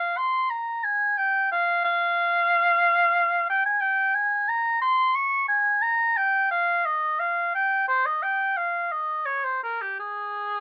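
A solo oboe opens this short fragment of a baroque-style classical fantasia, playing alone from 0.0 s to its close at 10.6 s. The mood is flowing and introspective, set in 3/4 at around 89 BPM, though the rubato feel lets the pulse breathe freely. The music begins in F minor and turns toward Ab major from 3.8 s, and the instrument is tuned slightly low, to A4 = 438 Hz. The oboe's tone is warm with a vintage character and vibrato, ranging from G4 up to Db6 in a classical style. Placed up front in a light reverb, the lone reed line carries the whole passage.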